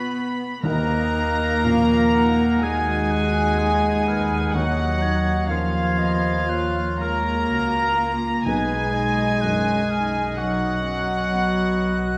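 Cinematic, sorrowful film score cut from a longer piece, in which a floating, sul tasto violin section carries a longing rubato melody over a second violin line, a pure flute, a mellow, distant cor anglais and a background clarinet, while a felt-muted upright piano and a dark viola section accompany, a French horn section holds warm sustained chords, cello and double bass sections supply the bass, and soft-mallet timpani sound from 0.6 to 2.1 seconds, the ensemble set in a wet scoring-stage reverb.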